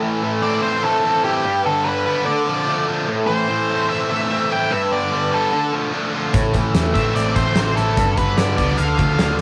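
Classic rock in A minor at 147 BPM, this gritty, swaggering excerpt from a longer piece cycles through Am, G and Dm with a straight 4/4 feel. A fingerpicked twelve-string acoustic guitar sits in the background, woody and boxy with old strings and a shimmering, octave-doubled tone. Two picked electric guitars drive the riff together, one bright, compressed and scooped with distortion, the other overdriven. From 0.4 seconds an up-front octave-fuzz lead guitar carries a dark, distorted melody over them. At 6.3 seconds a round, punchy hollow-body short-scale electric bass and a huge arena drum kit come in, the kit giving a fat snare, punchy kick and hi-hat in a big room. Wet spring reverb and studio ambience surround the mix.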